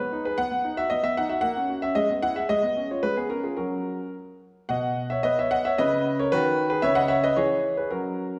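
In a 2/4 at 112 BPM with a rubato feel, this playful, elegant classical-period piano sonatina excerpt unfolds in B major on a solo grand piano, its tone warm, smooth and vintage, sitting up front and ranging from B2 to F#5. The opening phrase moves from B through F#/A#, E/G# and C#7/G# to F#, then a second phrase from 4.7 seconds returns to B before colouring the harmony with Bmaj9/C#, B/D#, C#m11 and C#m/E. A wet scoring-stage reverb with a 1.6-second decay gives the piano a generous sense of space throughout this 8.4-second fragment of a longer piece.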